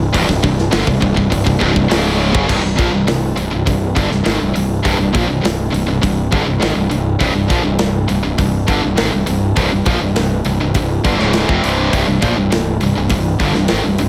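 Dark and relentless, this heavy metal excerpt moves in a straight 4/4, cut from a longer piece. Two bright, high-gain electric guitars play picked, distorted riffs in a low register from the very start, one of them sitting further in the background. Beneath them, a fingered electric bass pushes up front with a growly, punchy fuzz tone, its overdrive adding grit to the low end. An acoustic metal drum kit enters at 0.1 seconds, also up front, with a tight kick, a medium-tuned snare, hi-hat and crash cymbal, its sound mid-forward and rounded by a rolled-off top and a big-room feel. A brief opening passage gives way at 2.5 seconds to a longer second section that carries through to the end, with light reverb framing the mix and a C5 power chord anchoring the opening moment.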